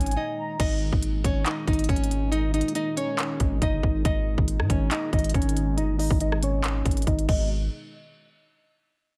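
Brooding, eerie half-time trap in which a fingerpicked classical nylon-string guitar carries the melody up front with audible finger squeak, over a smooth, detuned sawtooth analog pad in the background, a deep sine 808 bass that hits fast and decays, and a crisp electronic kit of hard-clipped kick, hi-hat, handclaps, rim click and crash, while a velvety unison synth lead with vibrato sounds only until 0.6 s, a brief break begins at 0.2 s, and a filter sweep runs on to 7.5 s.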